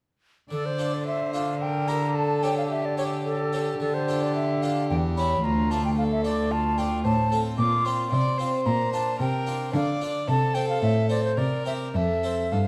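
In a flexible, rubato triple metre, this solemn, grave excerpt from a baroque-style sonata movement sets an airy, straight-toned wooden flute melody over a nasal, gut-strung violin second line, a full, plucked French-style harpsichord accompaniment and a reedy, up-front period cello bass, all four entering at 0.5 s inside a dark, resonant recital-hall reverb.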